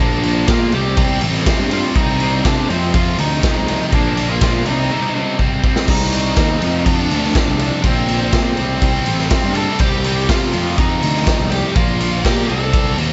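Cathartic and angsty, this short cut from a longer quiet-loud alternative rock track drives forward in a straight 4/4, moving through chords like Bb, Cm, F5 and Bb5. A dark, fuzzed-out octave-fuzz lead guitar carries the melody, its distortion thickened by a slapback echo. Beneath it, a bright, overdriven cranked stack guitar pounds out the riff, joined at first by a compressed, distorted second guitar sitting in the background that drops out at 5.9 seconds. A gritty, fuzz-laden picked bass holds down the low end with a warm, amped growl. The raw garage drum kit sits up front, its punchy kick, medium-tuned snare, crash and ride saturated in a pumping stone room with a rolled-off top, and a drum fill at 5.4 seconds leads into a repeat of the opening section within the small room's ambience.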